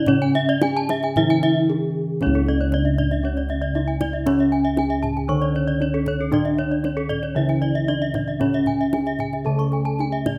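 Round, beating bossed gongs sit up front with a boxy small-room warmth in this shimmering, brilliant Balinese gamelan excerpt, carrying the bass beneath a mellow, soft bronze metallophone melody struck with padded mallets and pulsing from its paired tuning, a bright horn-mallet metallophone accompaniment, two close, dry, full horn-mallet metallophones playing ringing arpeggios, and a deep, acoustic kendang, set in light reverb.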